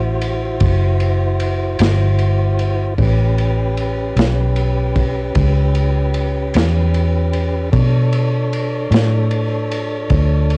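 The organ's sustained chords and the round, foam-muted fingered bass open this laid-back, gritty slow blues excerpt at 50 BPM in 12/8, with the dark, up-front bass carrying the low end under the organ's clear tone, key click and slow rotary speaker treated with cassette tape. The crunchy breakbeat kit enters at 0.2 seconds with a tight kick, medium-tuned snare and dark ride cymbal, its saturated sound having a rolled-off top and also running through cassette tape. The harmony moves from a rootless D9 to A9 at 3.0 seconds and Bm7 at 7.7 seconds, all in a dry home recording on cassette.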